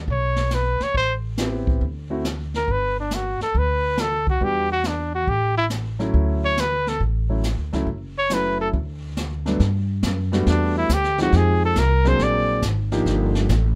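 Swinging and sophisticated, this short cut from a longer small-group swing and bop piece moves at 139 BPM in 4/4 with a firm swing feel in D major. A breathy, punchy trumpet carries the melody up front with vibrato, set against a woody, growly pizzicato upright bass that plays from the very start. A brushed drum kit of snare, hi-hat and kick sits farther back in a roomy space, its boomy kick and rolled-off top keeping it softer than the other parts. A clear concert grand piano with deep bass joins at 1.4 s to supply accompaniment through changes that begin on Am7 and D7 before settling on Dmaj7. Around 9.6 s the harmony takes a richer turn through Gmaj9, Fm7 and Bb7b13 toward Ebmaj7, while the trumpet drops out at 12.6 s and the rhythm section carries on to the close, all in a dry, intimate sound with little reverb.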